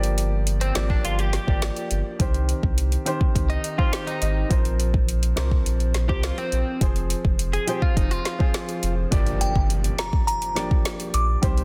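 A straight 4/4 dancehall groove at 104 BPM, hypnotic and sultry, rides an up-front electronic drum kit with deep kick, woody snare and metallic hats and a thick, saturated sub bass, while a natural baby grand piano pumps under sidechain and adds a fill, a bright, twangy twelve-string electric guitar picks spring-reverbed arpeggios from 0.6 s to 8.9 s, 9.1 s brings a background impact, and at 9.4 s a glassy FM synth bell melody with chorus and tape echo follows, set in a dense, heavily limited modern master cut from a longer piece.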